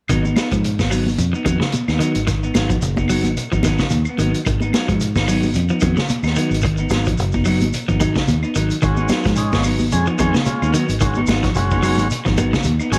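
A small, lightly reverberant room gives this hypnotic, intense afrobeat groove a close, vintage feel, with a swung sixteenth-note lilt sitting on a single minor-seventh chord throughout. Up front, a round, dark fingered electric bass anchors the low end, while an acoustic vintage drum kit brings a punchy kick, a medium-tuned snare, hi-hat and a rolled-off top. An electric guitar at the edge of break-up picks slightly gritty arpeggios, and a clean semi-hollow guitar adds hollow-bodied stabs, both carrying a slapback echo. Congas with a bright, high-tuned, damped skin, a grainy shekere and very quiet woody claves fill in the percussion, with the congas and shekere sitting in the background. At 8.8 seconds a buzzy combo organ with heavy vibrato joins as accompaniment, thickening the texture until this excerpt from a longer piece cuts off at 13.0 seconds.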